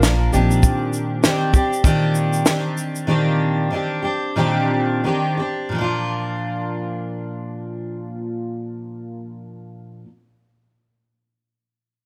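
Sunny and easy-going, this short acoustic pop excerpt in Bb major moves at 85-100 BPM with a 16th-note swing, opening on a full-bodied, double-tracked fingerpicked jumbo guitar bathed in plate reverb, sounding together from the first moment with a woody, dark pizzicato upright bass that stops at 0.6 seconds and a dry cocktail kit of punchy kick, high-tuned snare and shaker that drops out at 3.1 seconds. The tempo slows between 0.6 and 5.7 seconds as the harmony rests on Cmadd9/Bb, then settles onto Bb for the next section, with the up-front guitar carrying on alone until 10.1 seconds in a lightly reverberant room.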